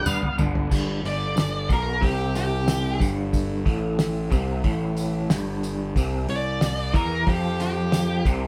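A live band playing together in one room, with moderate studio reverb, carries this hazy, trippy psychedelic rock fragment, where a short fill on the cloth-damped, thuddy drum kit, with its fat snare and dark cymbals, opens into an up-front, distorted octave-fuzz lead guitar solo from 0.7 s, set over a bright, twangy electric guitar riff played through a rotary speaker, a punchy overdriven fuzz bass and a jingly tambourine in the background.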